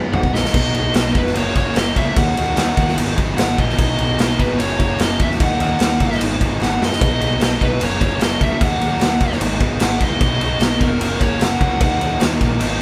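Indie rock with a jangly, upbeat mood, this short excerpt runs at 149 BPM in B major, cycling through G#m7, B6, F#add9 and D#m7 with the sound of a band playing live in one room. A raw garage drum kit sits up front, saturated and gritty with a boomy kick, a medium-tuned snare and a pumping stone-room character, opening with a fill and adding another at 6.6 seconds. Beneath it, a fuzz-laden picked bass drives the low end, while two very quiet overdriven guitars play riffs, one lower and one with a biting edge. A dark, compressed fuzz lead guitar carries the melody from 0.1 seconds to 12.2 seconds. Filling out the background are a lush vintage string machine holding slow-attack sustained chords with ensemble chorus, and a hollow, band-limited group handclap entering at 0.9 seconds, both very quiet.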